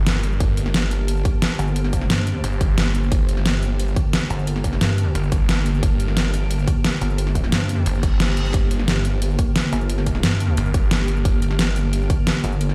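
Dark technical drum and bass at 177 BPM in G minor, this aggressive, tense excerpt sits on a single G minor chord, with a swarming, warbling drone of detuned sustained chords carrying built-in reverb and sidechain pumping beneath a snarling, growling sawtooth bass, distorted and overdriven, joined at 1.6 seconds by a pulsing, chorused pluck wobble bass. An overdriven dubstep kit with a deep snare, metallic hats and shaker sits up front beside a punchy layered electronic kick, both re-recorded in a small room, while a brief reverse cymbal sweeps through at 8.0 seconds. The mix is otherwise dry but played back on a big system in a bare stone room, leaving a faint mains hum underneath.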